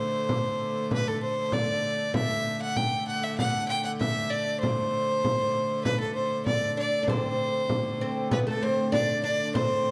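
A clear, close fiddle with light vibrato and an airy bow carries the melody over a smooth, wheel-bowed hurdy-gurdy drone from the very start of this festive, ancient-sounding medieval dance in D mixolydian at 97 BPM in 2/4, with a small, bright frame drum played with hard hands joining at 0.3 seconds and a woody, double-strung fretless oud adding a plectrum-plucked second line from 6.8 seconds, heard in a recital hall's reverb.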